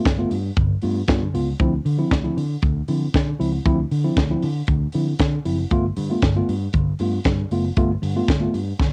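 A tight, up-front funk drum kit drives this short disco excerpt, its punchy kick, high-tuned snare and hi-hat sounding close in a small room and carrying a cassette-tape grain. A punchy, amped fingered electric bass joins at 0.1 seconds beneath a mellow, clean tine electric piano that also wears cassette coloring as it moves from G9 to Dm9 at 1.6 seconds and back to G9 at 5.7 seconds. The feel is straight, driving and danceable, with light reverb and the homespun character of a home cassette recording.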